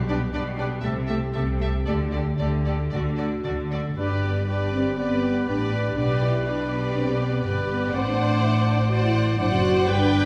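A cheerful, spirited classical-period symphony orchestra movement in G major, moving at 113-127 BPM in 4/4 with a rubato feel, where a rich, focused chamber violin section carries the vibrato melody over sustained chords from a dark, distant French horn section and a bass line from lush double basses and smooth cellos, while a hollow, airy flute, a roomy oboe, a soft-edged clarinet and a second, background studio violin section weave second lines, and expressive violas fill the accompaniment, all heard from further back in a wet scoring-stage reverb as the harmony moves from G/B to a D7/A near 7.9 seconds.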